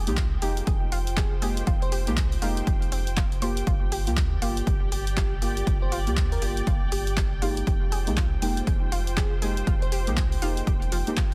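Deep and warm, this deep house excerpt moves at 120 BPM in F dorian with a swung 16th-note feel, shifting from Fm11 to Gm7 and back. An overdriven electronic kick, recorded in a large room, and a dry, punchy analog drum machine with handclaps and hi-hat drive the groove over a round sine sub bass. Dark, detuned chord stabs with chorus and tape echo, a nasal sawtooth pluck playing arpeggios in the background, and a veiled, con sordino string section all pump with sidechain, while a sparkling, warbling FM electric piano with tremolo adds a brief bell-like melody at 1.2 seconds and returns from 5.2 to 9.9 seconds.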